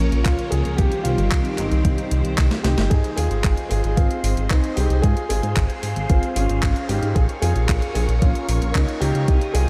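A dark, boxy grand piano carries the melody over lush, phased string-machine chords and a glossy, chorused synth bass from the first moment of this nostalgic, melodramatic italo disco cut at 113 BPM in Bb dorian, with a 12-bit drum machine's overdriven handclaps, hi-hat and snare joining at 0.1 s, a thumpy electronic kick arriving at 0.3 s, and a drum fill and band accent pushing into the second section at 2.9 s, all set in a light reverb while the piano trails a diffuse delay and audible action noise.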